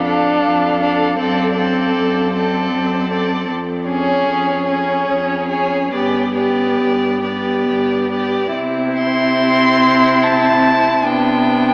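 Classical chamber music, this slow romantic movement for string quartet unfolds in a rubato three-four, its mood solemn and melancholic. A clear, focused first violin carries the melody with vibrato, set distant in the mix, while a second violin with a rich, smooth and even tone sings a second line up front. The viola, also up front and bowed with vibrato, fills in the accompaniment, and a warm cello supplies the bass with light vibrato, a soft attack and an airy, intimate bow heard close by. All four players sound together from the start through 11.7 seconds, with the music moving into a new section at 8.6 seconds. A wet cathedral reverb with a 5.6-second decay places the quartet in a vast, echoing space, and the recording carries an AM radio sound, as a fragment cut from a longer piece.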